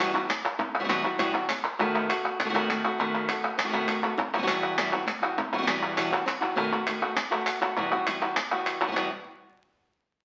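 Heard through the crackle of a very old 78 rpm record and a wet studio reverb, this short flamenco fragment from a longer piece feels mournful yet fiery. A bright, boxy fingerpicked guitar with fresh strings carries the melody up front, moving between Emadd9 and B7. Crisp, close and dry palmas hand claps sit beside it until both fall away at about 9 seconds.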